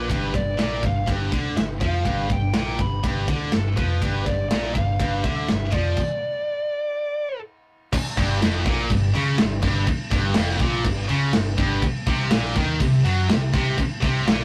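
Energetic and powerful, this hard rock excerpt drives along at 123 BPM in a straight 4/4, with a dark, up-front high-gain lead guitar carrying the melody until 7.4 seconds over two bright, distorted rhythm guitars riffing low, one scooped and set in the background, plus a round, punchy overdriven bass. A tight metal drum kit with a medium-tuned snare and rolled-off top sits mid-forward, and after a stop from 6.0 to 7.9 seconds a very quiet double-tracked high-gain guitar joins the riffing as the harmony shifts from G5 toward Bbm6/F and Ebm6/Bb. The sound is a rough rehearsal-room recording with a short, wet booth ambience and saturated character.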